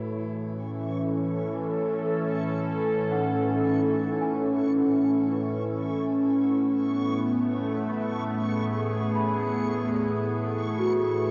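Peaceful and serene, this ambient passage, cut from a longer piece, drifts at 55 BPM in a straight 3/4, centred on A lydian with the tuning set slightly low at A4 = 438 Hz. Up front, an evolving wavetable pad holds sustained chords with a slow attack and long release, its detuned, warbling, full-bodied tone thickened by chorus and its own reverb, moving from Aadd9 to E/A at 5.9 seconds. Behind it, a large celesta fades in with bell-like, delicate arpeggios, bright and ringing, carried on a tape echo. A reedy, breathing pedal harmonium also fades in, holding a low drone deep in the background. From 0.2 seconds a reversed, granular texture rises softly on a high C#6, dreamy and bright with its own reverb. The whole recording has the character of a home cassette recording, set in a small room with a wet spring reverb.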